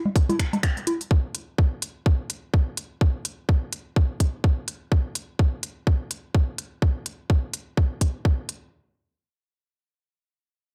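Hypnotic and quirky, this swung techno passage is a short cut from a longer piece. Overdriven congas, bongos and woodblock with analog delay and a small-room sound open at 0.1 seconds and drop out at 1.0, while from 0.2 seconds a tight, tape-warm electronic kick drives the groove beside a garage drum kit of finger snaps and crisp hi-hats, both re-recorded in a large room. Every part sits up front in a dry, gritty hardware recording with little reverb.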